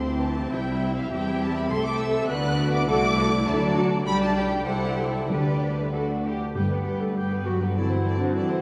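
A spirited, cheerful classical-period orchestral movement in G major, taken from a longer piece, moves at about 94-103 BPM in a rubato 2/4. A lush first violin section sings the melody with expressive vibrato over an intense, clear second violin line, while violas with portamento, smooth cellos in the background and focused, up-front double basses fill out the harmony and bass. Very quiet timpani struck with hard mallets join at 5.3 seconds, followed by a mellow, distant solo clarinet at 6.5 seconds and punchy French horns holding chords from 6.6 seconds, all set in a vast, echoing cathedral reverb.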